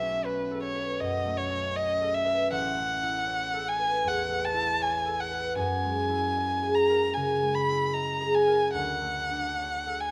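Mysterious and hazy, this impressionist classical duo for violin and harp moves at an unhurried 70-82 BPM in 4/4, with a rubato feel that lets the pulse breathe. A single bowed violin carries the melody from start to finish, its tone rich and smooth, shaded by vibrato and held at an even level, sitting close and up front between B4 and B5. Beneath it, a concert harp supplies fingerpicked accompaniment reaching from a deep A1 up to D#5, its acoustic, mellow strings ringing out and also placed up front. The harmony drifts through colorful extended chords, from B9sus4 to A69, then F#13, settling on Dmaj7 at 8.8 seconds. Close, detailed microphones capture both instruments inside a moderate recital hall reverb, and this 10.1-second passage is cut from a longer piece.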